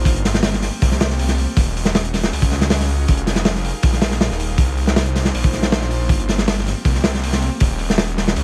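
An airy, breathy pad with chorus sits in the background over a thick, menacing detuned saw bass from the start, joined at 0.1 s by a crunchy, saturated breakbeat kit of tight kick, medium-tuned snare and hi-hat, dark and up front in a small room, as this nostalgic, raw drum and bass and jungle excerpt cycles through minor eleventh chords such as Gm11, Ebm11, Fm11 and Cm11 beneath a layer of vinyl crackle.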